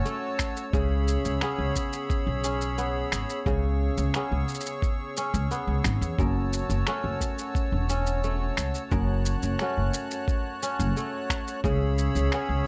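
Dark production under light reverb frames this wistful, autumnal folktronica piece in F# minor, moving at 88 BPM in a straight 4/4 and cut from a longer work. A fingerpicked kora plays ringing, crisp arpeggios roughened by vintage 12-bit sampler grit, with digital delay and plate reverb. An accordion holds reedy, sweet, airy chords, colored by light tremolo tuning and set in its own plate reverb. From 0.7 seconds, a woody, growly pizzicato upright bass on steel strings sits up front and anchors the low end. The sampler-style beat is compressed and muffled: a thumpy electronic kick pairs with an electronic shaker and finger snaps in a touch of studio ambience, while the harmony sways between F#m7 and C#m7.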